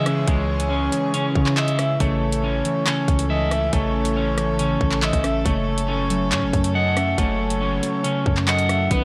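An electric guitar at the edge of break-up sits up front, picking twangy, slightly broken-up arpeggios through a low-pass filter and digital delay in this dark, tense drill excerpt at 139 BPM, in 4/4 with a half-time feel. A drill drum kit enters at 0.1 seconds with a hard-clipped kick, metallic hats, handclaps and rim clicks, carrying tape-warm 12-bit sampler grit. A distorted 808-style bass anchors the low end with a heavy, aggressive tone and fast, decaying notes. Muted felt-like synth keys add soft, full-bodied accompaniment darkened by a low-pass filter and chorus, while a studio string section bows sustained chords with a reedy, gut-string, period-style tone and a smooth top. Meanwhile, a breathy flute-like synth lead carries a second line with vibrato, chorus and digital delay, and a very quiet electronic downlifter sounds within the first 2.0 seconds. The harmony moves from C#m to A to F#m in light reverb, tuned to A4 = 442 Hz.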